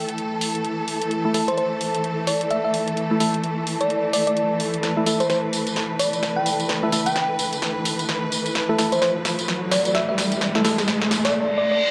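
A round, tine-like thumb-piano synth pluck carries the melody from 1.5 seconds in this swaggering, bouncy bass house build-up at 129 BPM, riding over punchy, up-front house drums with a drum fill from 4.8 seconds, hollow percussive organ stabs with tape echo, a clear, biting string section with vintage sampler grit, a warbling, nostalgic pad in the background, and a riser and reverse cymbal from 7.1 seconds, all in a dark production with a wet digital room reverb.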